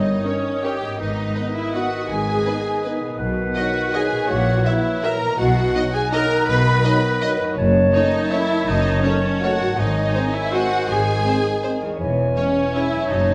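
This classical excerpt moves in a flowing triple metre with uneven, rubato timing, its mood dark and bittersweet as the harmony settles toward a minor home. A violin section carries the melody with a soft attack and expressive, lush vibrato, while a second violin section, a mellow, hollow flute ensemble, a distant oboe and a clear clarinet weave supporting lines behind it. The viola section sits up front with a rich, focused tone, and below it the cello and double bass sections give the low end a smooth, bowed foundation. A dark bassoon adds punchy accompaniment, a roomy French horn section holds sustained chords from 0.2 s to 12.9 s, and a concert harp rings out arpeggios that span a broad range. The whole ensemble sits in a wet recital hall reverb with a soft, rounded top end, giving the orchestra a spacious, enveloping sound.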